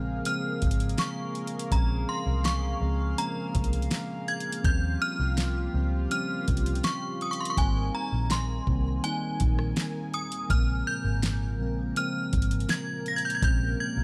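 A ringing FM synth chime opens this late-night, moody contemporary R&B clip, its inharmonic, warbling tone carried up front by ensemble chorus, tremolo and digital delay as it plays the melody high above everything else. Beneath it from the first second, a mellow tine electric piano supplies clean, direct accompaniment, while a chorused pulse-width pad holds shimmering, retro chords that slowly evolve with a slow attack and long release. A vintage muted picked electric bass sits low and round, its dark, foam-muted, amped tone anchoring the straight 4/4 groove. At 0.3 seconds a produced electronic drum kit joins with a knocking kick, fat snare, rim click and metallic hi-hats, tape-warm and up front, before dropping out at 13.6 seconds. The harmony drifts from Bbm9 through a rootless Eb13 and Abmaj9 back to Bbm9, and the dry mix keeps every part close and intimate in this short section cut from a longer piece.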